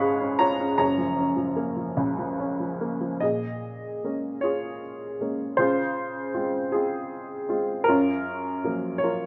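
Melancholic and dark, this short fragment of lyrical classical solo piano unfolds in a rubato 6/8, with a worn, woody, slightly detuned upright piano placed up front in a moderate recital-hall reverb, moving from Db13 and Gbmaj7 harmonies into a Bbm7 at 3.2 s before drifting through Dbmaj7 back to Gbmaj7.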